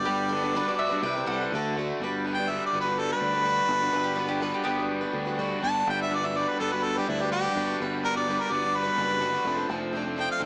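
A clear, up-front harmonica carries the melody of this hopeful, open-road folk rock and heartland rock excerpt, moving into a pop-style solo at 2.0 seconds that runs to the close. Set at 125 BPM in a straight 4/4 in G major, the harmony moves from Gmaj7 through Cmaj7 and D before settling back on Gmaj7, with an F6 arriving at 9.5 seconds. A boxy, plugged-in acoustic guitar picks a swing-style accompaniment, while a raw garage guitar, double-tracked and overdriven, adds a bright riff. A woody mandolin with its doubled strings plays a second line until 5.5 seconds, and a fingered electric bass sits underneath with a growly, direct tone. The whole piece sounds as if heard through a small speaker, wrapped in a moderate echo chamber reverb.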